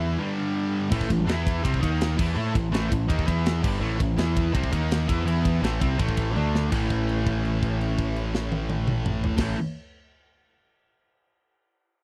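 Heavy metal with an aggressive, heavy mood, built on a growling overdriven bass up front, a double-tracked crunchy guitar and two bright high-gain distorted guitars driving riffs over a very quiet bowed string section with vibrato, while a tight, warm drum kit enters at 0.9 seconds and plays a fill just before a long held note begins at 6.7 seconds, all in a dry, close 1970s-style studio sound.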